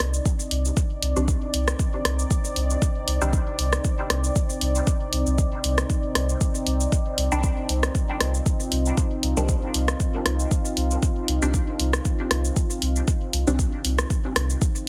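A steady 117 BPM pulse in 4/4 with a light 16th-note swing drives this nocturnal, hazy dub techno cut in C minor, taken from a longer piece. A deep house kit of cabasa, hi-hat and rim click with a small-room character plays from the start, joined at 0.3 seconds by a deep, layered electronic kick that sits up front. Underneath, a soft, round dub sub bass holds C2 with a fast attack and sustained tone, breathing with sidechain pumping. A moody, detuned sawtooth pad with a sine sub octave swells in slowly, sustaining a Cmadd9 chord through chorus and its own reverb while also pumping with sidechain compression. A muted, nasal chord stab with a moving notch, phaser and dub echo appears briefly from 1.2 to 3.4 seconds and returns from 7.3 to 13.6 seconds, its short plucked decay adding mellow color. The whole mix has light reverb and a heavily compressed, radio-like sound.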